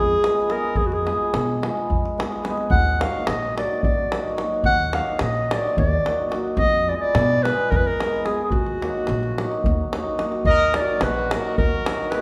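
Fiery and restless, this fragment of a Balkan wedding-band tune in 7/8 puts a warm, classical-style clarinet up front over a shimmering, hammered cimbalom, a woody, thumpy pizzicato upright bass and a deep davul, with a clear, soft-edged trumpet joining from a distance at 10.5 s, the ensemble set in the lingering reverb of a recital hall.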